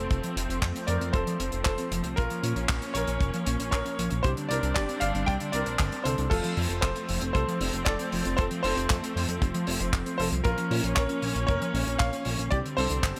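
Italo disco with a romantic, sunny glow, this excerpt from a longer piece sets a bright, worn baby grand piano melody with audible action noise and a touch of digital delay over rich, smooth bowed strings holding sustained chords. A mellow, clean electric guitar adds fingered arpeggios in the background, while a glossy, evolving synth bass built from pulse and sawtooth waves carries a dark, chorused low end. A damped 70s drum kit with hi-hat, handclaps and crash cymbal joins a tight, dry kick from 0.1 seconds, all set in a small room with light reverb.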